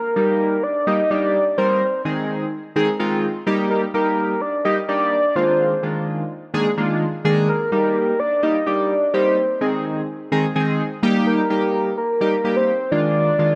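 A straight 4/4 pulse at 127 BPM drives this upbeat, summery dance-pop passage in Eb major, cut from a longer piece. The soft, octave-layered synth lead opens at 0.0 s and carries the melody between Bb4 and Eb5. Its round triangle and sine tone sits over a sub octave with a touch of wave-folding, shaped by vibrato, chorus and delay. From 0.2 s a chorused polysynth fills in the accompaniment from Eb3 to Bb4, glossy and retro, its pulse and sawtooth waves evolving through pulse-width modulation and a filter sweep. Both synths sit up front with fast attacks and sustained notes over a pedal-like progression that keeps returning to Eb, moving through Ab/Eb and Bb7/Eb. A lush hall reverb with a 2.4-second tail gives the sound a spacious sheen through to 13.6 s.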